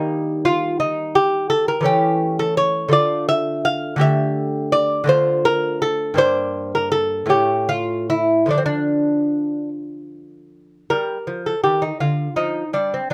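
A solo lute, mellow and delicate with gut strings, some octave-doubled courses and a fingerpicked touch, sits up front in this short excerpt from a longer baroque-style dance in D minor. The mood is flowing and solemn, moving in a rubato 6/8 at roughly 49-58 dotted-quarter beats per minute, with harmony passing through Eb, A7/E, Dm and Gm before a return to the opening section at 10.9 seconds. Light reverb gives the playing a gentle sense of space.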